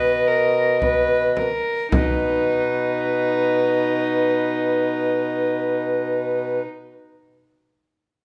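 A renaissance-style consort dance in classical style, this short passage feels festive and stately, moving in four. A tenor recorder carries the melody with an airy, wooden, straight tone, its tongued notes showing a chiff and lifted highs. Beneath it a single dark violin plays a bowed second line, its gut-string sound reedy yet smooth on top, set up front in a period manner. A mellow bassoon holds the bass on B2 with light vibrato and a punchy attack, while a deep, large frame drum, close and dry, sounds only from 0.8 to 2.5 seconds. The opening slows down through its first 1.9 seconds before a new section begins, and a wet recital hall reverb surrounds the consort.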